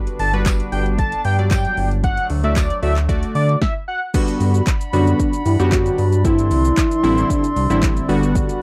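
A dry, close recording with a 1970s studio feel carries this short, carefree dance-pop fragment in G major at 114 BPM, cut from a longer piece. A deep house drum kit sits up front with a deep kick, punchy snare, metallic hats, handclaps, shaker and crash, all given a gritty overdrive, while a glossy, retro chorused synth bass pumps underneath from G1 to D3. Round, detuned analog keys and a close-miked woodwind section holding vibrato-tinged chords both breathe with the sidechain pumping, moving from Gmaj7 to D and then through Gmaj7 and Cadd9. A bold, octave-doubled lead carries the melody high in the D5 to A5 range with chorus and slapback echo, a jingly tambourine ticks in the background, and the band stops briefly from 3.6 to 4.1 seconds. After that break a soft, dark, octave-layered synth lead takes over lower down, from 4.9 to 7.8 seconds, colored by chorus, tremolo and slapback echo.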